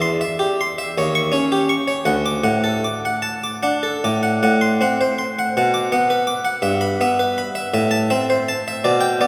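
A lone Flemish-style harpsichord, airy, round and plucked on a single set of strings, sits up front through this flowing, dance-like 9.3-second fragment of a baroque-style classical suite movement, moving in a rubato 6/8 at roughly 50-57 dotted-quarter beats per minute across a range from D2 to D6 and through chords such as C/E, Eb7, D, F#dim/A, Bm, Em/G and Am, all bathed in a wet cathedral reverb with a 4.2-second decay that places the listener further back in the room.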